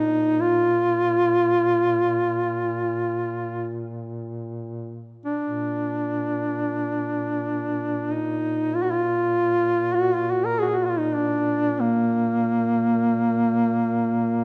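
In free time, this Caucasian folk lament unfolds with a solemn, longing mood across its 14.4 seconds, cut from a longer piece. A warm, close-miked duduk carries the melody up front, its folk-style line shaded with vibrato and scooped notes, while a second, mellow duduk holds a low drone beneath, also marked by vibrato and scooped notes. Moderate concert hall reverb lends the pair a spacious, resonant setting.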